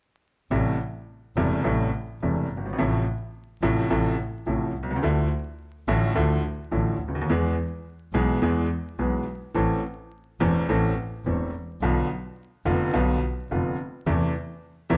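Through vinyl crackle and light reverb in a dark production, this melancholic, passionate tango excerpt in A minor moves with a rubato feel around 106 BPM, as an up-front, woody upright piano with audible action noise and a brilliant edge plays accompaniment over a rich, bowed double bass sung with vibrato and portamento, the harmony passing from Am7 through Dmadd9, E and Bdim before resting on Am/E.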